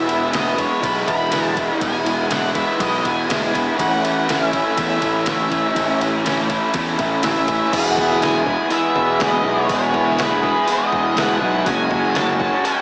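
Hazy and wistful, this short cut from a longer shoegaze and dream pop rock piece moves at 122 BPM in E major, with a double-tracked, overdriven electric guitar riff up front under lush chorus, a dark octave-fuzz lead guitar melody through distortion and analog delay, a punchy fuzz picked bass, and a detuned 8-bit drum machine with a thumpy kick and medium-tuned snare, all soaked in a wet, lush hall reverb with a small-speaker sound as the chords pass from E to A, back to E, and on to F#sus2 near 11.7 seconds.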